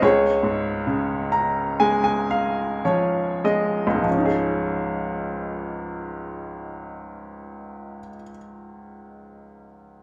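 A bright, woody upright piano sits up front in a moderate recital hall, its brilliant, intimate tone carrying audible action noise and long sustain as it plays a sunny, lyrical classical solo in Db major at a rubato 47-75 BPM, slowing over the opening with a fill from 0.9 to 4.1 seconds before settling onto a Dbadd9 chord at 4.1 seconds in this short cut from a longer piece.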